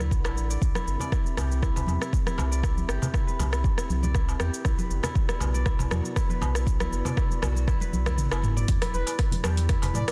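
Afro house at 119 BPM in E minor, spiritual and driving, with a swung 16th-note groove built from a deep, up-front electronic kick, an afro-pop kit of metallic hats, rim clicks, shaker and toms, soft-handed congas in the background, and a crisp metal-shelled darbuka. A round, tube-saturated sub bass and a moody, detuned analog pad with lush chorus both pump under the sidechain, while a bright, ringing fingerpicked kora plays arpeggios through tape echo over chords moving from D7 to Cmaj7 and Bm. After a drum fill in which the kick drops out, the drop lands on Em7 at 8.7 seconds, and a smooth, mellow synth lead with vibrato and subtle chorus enters at 8.9 seconds within a dense, heavily limited, fairly dry mix.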